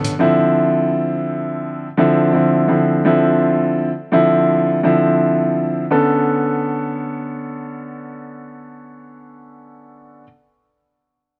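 Light reverb and a small-room ambience frame this moody, tough hip hop fragment at 84 BPM in 4/4, with a 57% swing on the sixteenths. A smooth, vintage grand piano sits up front as the accompaniment, shaped by high-pass and low-pass filtering and a cassette-tape color, ranging from D3 to A4 across the full 10.2 seconds. It rests on a Dm9 chord before shifting to Bm9 at 5.9 seconds.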